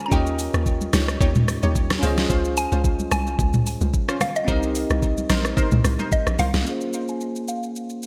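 Amapiano with a hypnotic, deep mood, built on a bell-like tine electric piano and a woody, mallet-like synth pluck melody, both running the full 8.1 seconds, over a hollow, bouncy log drum bass, punchy detuned chord stabs, background congas with a thick skin, and a smooth R&B drum kit with a knocking kick and metallic hats placed up front, all set in a lush hall reverb with bright 1980s-style digital production and closing on a filter sweep from 6.7 seconds, just after the bass and stabs drop out.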